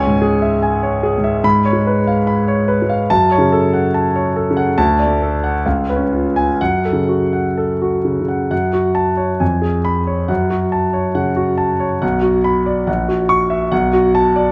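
Set in a two-beat metre and played with a free, elastic rubato, this romantic character piece for solo piano has a bittersweet, stormy mood. The concert grand carries everything alone, ranging from A#1 up to C#6, with a deep bass, smooth tone, long sustain and a somewhat vintage colour. Close, detailed microphones and light reverb place the instrument up front, so its resonance fills the short span. The harmony circles through minor chords and their dominants, settling on an F# minor chord at 3.1 seconds before moving through D and back. A new section begins at 8.5 seconds and turns toward B minor. The passage is cut from a longer piece.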